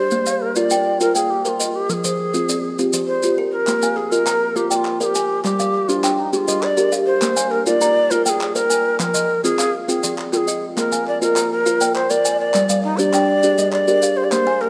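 A breathy, chiffy wooden flute with vibrato carries an expressive melody over two interlocking kalimbas, one mellow with a hollow fingertip pluck and the other bright with a thumbnail pluck, in a hypnotic southern African traditional cycle in 12/8 at 135 BPM in Bb mixolydian, with grainy maracas throughout and a hollow group handclap joining at 3.7 seconds, all bathed in a lush hall reverb in this rough home demo excerpt cut from a longer piece.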